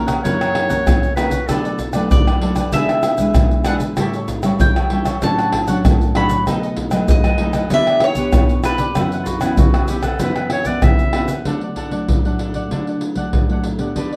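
A straight 4/4 samba groove at 96 BPM opens this playful, sunny slice of samba and choro: egg shaker, deep surdo, pandeiro and tamborim sit up front and are the loudest layer, set in a large-room acoustic. Over them a round, double-stringed mandolin carries the picked melody, while a crisp cavaquinho and a classical-style, fingerpicked nylon-string guitar fill in the accompaniment beneath. A bright, present clarinet adds a classical-style second line in two short passages, the later one running from 9.2 to 11.5 seconds. The harmony moves through seventh chords such as F#7, Bm7, E7/B and A7 before a suspended F#7sus4, and the mandolin drops out at 10.8 seconds. At 11.5 seconds the music settles onto D for a new section, with guitar, cavaquinho and percussion carrying on to the end of this cut from a longer piece. The production is dark and warm, with a moderate studio ambience and tuning at A4 = 441 Hz.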